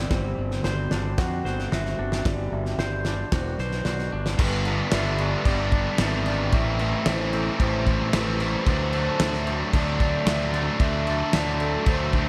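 A straight 4/4 pulse at 112 BPM drives this soaring, hopeful post-rock excerpt, where a loose indie drum kit with a fat snare and punchy kick sits up front beside a round, fuzz-drenched fingered bass, while a twangy guitar with phaser and tape echo and a mellow soft-mallet vibraphone spin arpeggios over a moody, detuned analog pad that holds chords until 4.4 s, when a bright, double-tracked distorted guitar riff enters, the mix bathed in a dreamy hall reverb as the chords move from D7/G through G6 and Am7 to D5.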